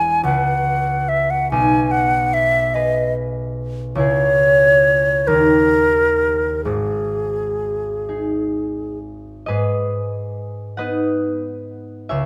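A mellow, hollow concert flute and a ringing, fingerpicked concert harp open together in this yearning, elegiac romantic duo in G# minor, unfolding in a rubato 6/8 at roughly 41-50 BPM in dotted quarters. The flute sings the melody up front with pure tone, vibrato and tongued notes, reaching G#5 at 6.6 seconds. The harp's accompaniment moves through G#m/B, C#m and D# and carries on alone after the flute stops at 9.0 seconds, settling on G#m to close this cut from a longer piece, all captured closely in a moderate stage reverb.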